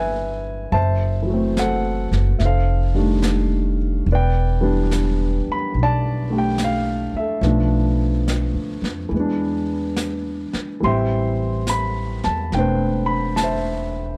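Romantic and late-night, this slow jazz ballad moves at 71 BPM in 4/4 with a gentle swing on the eighth notes. A grand piano carries the accompaniment from the start, intimate and natural, with its action noise audible up close, voicing chords that open on a rootless Cmaj9 and pass through F13 and Em7 before settling on Am9. An upright bass sits beside it from the first moment, plucked, woody and thumpy, placed up front in the mix. A brushed drum kit joins at 0.7 seconds with snare and hi-hat, sitting lower in the balance with a smooth, rolled-off top. The production is dark and dry, with little reverb, and the passage is cut from a longer piece, ending at 14.2 seconds.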